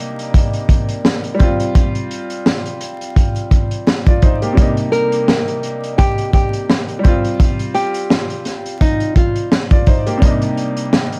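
A crunchy breakbeat drum kit sits up front in this gritty, moody boom-bap hip-hop excerpt. It enters at 0.2 seconds with a swung 16th-note feel, its punchy kick, high-tuned snare and hi-hat sounding saturated and dark with a rolled-off top. Beneath it, a clear, woody upright piano carries the accompaniment from the start, its long sustain given a vintage cast by cassette tape colouring and filtering as the harmony moves between Cm7 and Fsus2. At 4.9 seconds a small, fingerpicked nylon-string guitar takes the melody, filtered and touched by digital delay, before dropping out at 9.5 seconds. The production is dusky and warm, framed by small room ambience and vinyl crackle.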